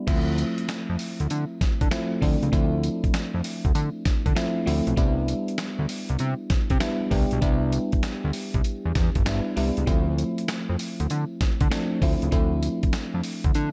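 A glassy, bell-like FM electric piano with a chorus shimmer opens this bouncy, punchy new jack swing excerpt at 98 BPM, outlining Dm7 and Cmaj7 in D dorian with a swung 16th-note feel and a slightly sharp tuning. A fat, detuned analog bass built from sawtooth and square waves, with an evolving filter sweep, joins at 0.1 seconds alongside a gritty, compressed sampler-style drum kit of thumpy kick, medium-tuned snare, hi-hat, handclaps, tambourine and crash cymbal. The mix keeps all three parts up front in a dark production with light reverb.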